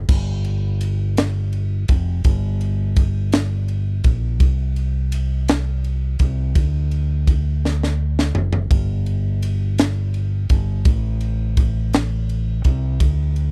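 Fervent and solemn, this slow gospel passage in 6/8 pairs a dark, round fingered electric bass, amped and punchy and holding low from the very start, with a crisp fusion drum kit that enters at 0.1 seconds on kick, snare, ride, crash and toms. The kit sits up front in a small, pumping room, its bright cymbals, high-tuned snare and tight kick given a gritty, saturated edge, and it breaks into a fill from 7.6 to 8.7 seconds. The sound is dry and close, with little reverb, and the excerpt is cut from a longer piece.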